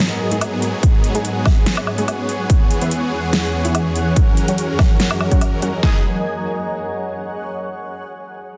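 Menacing and chaotic, this heavy wobble dubstep fragment rides a half-time groove of two layered electronic drum kits up front, one with a punchy kick and deep snare and the other with a huge snare, metallic hats and woodblock, beneath huge, bright detuned supersaw chords and a cloudy, blurred granular pad that both pump against the sidechain, while bold orchestra-hit-like synth stabs with tape echo cut in from 0.3 seconds, all set in a lush hall reverb and a dense, heavily limited master.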